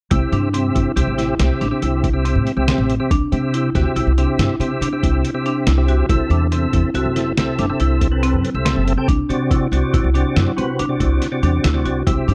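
Progressive instrumental band music in 7/4 at 140 BPM in C lydian, driving and bright, cut from a longer piece, with an up-front percussive tonewheel organ adding key click, chorus vibrato and slow rotary speaker over C, Em, Am and D chords, a dark, woody marimba playing arpeggios, a thumpy pizzicato upright bass, and a muffled, pitched-down, overdriven sampler-style drum kit with a fat snare, all captured as a dry, close 1970s-style studio recording.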